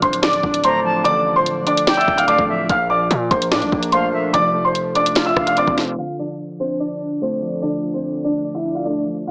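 Drill-style hip hop in D minor at 146 BPM with a half-time feel, this dark, cold excerpt is heard through a low-pass filter with a small-speaker sound and light reverb. A warm concert grand piano carries the melody up front, smooth and vintage with short sustain, while warbly lo-fi synth keys with chorus, detuned and nostalgic, fill out the accompaniment across the same 9.3 seconds. A distorted 808-style bass, heavy and saturated with a noise layer, drives the low end alongside an electronic drill kit of knocking kick, sharp snare, rim click and tape-toned hats, both dropping out around 6.0 seconds. From 0.6 seconds an airy, bright concert flute adds a close-miked second line with vibrato and tape echo. The chords move from Dm through Bbmaj7 and F6 back to Dm, and a filter sweep runs through the closing section from 6.0 seconds.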